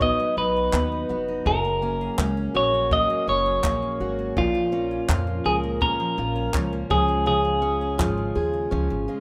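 A twangy, compressed clean electric guitar sits up front with spring reverb, carrying the melody in this sunny, carefree acoustic pop snippet, backed by a picked archtop acoustic guitar's accompaniment, full-bodied arpeggios from a steel-string dreadnought, a woody, thumpy pizzicato upright bass on gut strings, and a dry compact cocktail kit of handclaps and punchy kick, over a B, F#add9, A#m, C# progression in a rough home-demo mix with moderate studio reverb.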